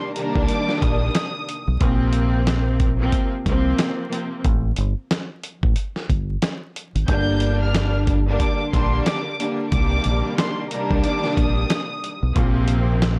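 Boom-bap hip-hop with a tough, moody cast, this excerpt rides a swung 4/4 groove in a minor key. A clear, lush string section holds the accompaniment from the start, bowed close and up front with focused vibrato, while a dark violin section carries the melody in a high register, its soft attack and smooth top touched by analog delay. The violins sound briefly at the opening, fall silent at 1.8 seconds and stay out through the break from 4.4 to 7.1 seconds, then return at 7.1 seconds. A dusty, sampler-style drum kit with 12-bit grit comes in just after the start, pairing a thumpy kick and medium-tuned snare with hi-hat, compressed and re-recorded in a small room. Beneath it, a deep dub fingered electric bass sits round, punchy and dark, while the whole recording stays dry and gritty, with transformer saturation and vinyl crackle.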